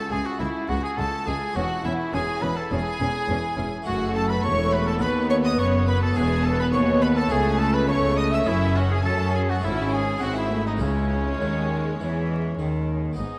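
A distant, roomy oboe sings a stormy, driving melody alongside a rich, expressive chamber violin line in this baroque-style concerto fragment, joined by a focused background violin second line, a lush viola section, a smooth, even cello section, an intense, up-front double bass section and a very quiet, brilliant, close-miked harpsichord, all cast in vast cathedral reverb with vinyl crackle.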